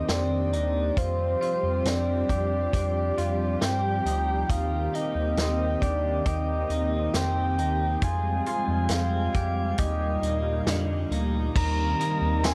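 A straight 4/4 pulse at 68 BPM from a punchy, up-front vintage drum kit with dark cymbals, entering at 0.1 s, carries this floating, blissful dream pop excerpt in Eb major, where a deep, nasal round analog bass and an airy, detuned warm analog pad with chorus sit beneath twangy, compressed clean electric guitar arpeggios touched with subtle chorus and digital delay, while a soft octave-layered synth lead sings a vibrato-tinged melody through chorus and digital delay, the whole set in light reverb.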